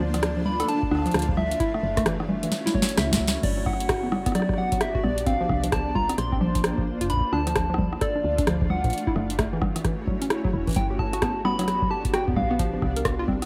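Heard through light reverb in a rough home demo mix, this wistful, playful IDM fragment from a longer piece swings its sixteenths over a blurred, evolving granular cloud pad and a warbling, lo-fi pluck spinning arpeggios through chorus and digital delay. A gentle, keys-like FM lead with a bright edge carries the melody, while a woody, round FM bass with tube saturation sits beneath. Up front, a booming analog drum machine with crisp snare, metallic hats, congas, rim clicks and crash is joined at 0.8 seconds by a deep, tape-warm electronic kick, and a drum fill from 2.5 seconds leads into the repeat of the section at 3.4 seconds.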